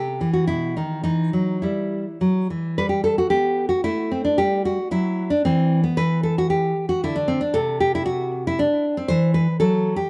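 A classical, baroque-style dance for solo nylon-string guitar in triple metre, this brief passage feels flowing and dance-like, with a supple rubato that gives the phrasing an unhurried give and take. The fingerpicked guitar sits up front with a bright, full-bodied tone, moving through chords such as Em, G and Emadd9, and the phrase is stated twice in succession. A moderate studio reverb and a dark, warm production surround the instrument.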